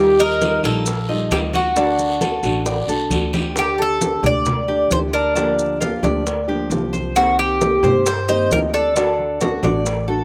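A bright, metallic Cuban tres leads this nostalgic Cuban son and guajira passage at 133 BPM in 4/4, carrying the melody up front with doubled strings, some in octaves, and a slapback echo. A second tres picks arpeggios beneath it, while a dark, fingerpicked nylon-string guitar with audible finger squeak supplies classical-style accompaniment and a woody, thumpy pizzicato upright bass on gut strings anchors the low end. Almost at once the percussion joins: ringing, low-tuned congas played with soft hands, tight high-tuned bongos struck hard with slapback echo and sitting distant in the background, grainy, mellow maracas heard close, and a raspy guiro that drops out at 3.6 seconds. A drum fill from 2.7 seconds leads into a new section at 3.6. The harmony moves from Ebadd9 and D through Dsus4, Gm7/D and Cm7 before returning to D. The open-air recording carries little reverb, giving this cut from a longer piece a warm feel.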